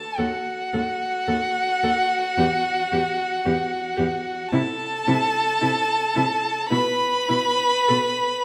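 Melancholic and elegiac, this short passage cut from a longer piece is a slow romantic movement for string quartet, moving at around 48-57 BPM in 4/4 with a rubato feel and tuned to A4 = 441 Hz. A single bowed violin carries the melody up front, its smooth top sweetened by vibrato and portamento, while a second violin traces a lower line with a soft attack and the same expressive sliding. From 0.2 seconds a bowed viola adds accompaniment with a rich, distant tone in the background, and a close cello supplies an even, smooth bass. The harmony moves from D#dim through Em and Am/C to E5/B before the chords drop out at 7.9 seconds; the viola and cello stop at 8.0 seconds, while both violins sound until 8.4 seconds. A wet recital hall reverb, lasting about 1.6 seconds, gives the quartet a resonant, mournful glow.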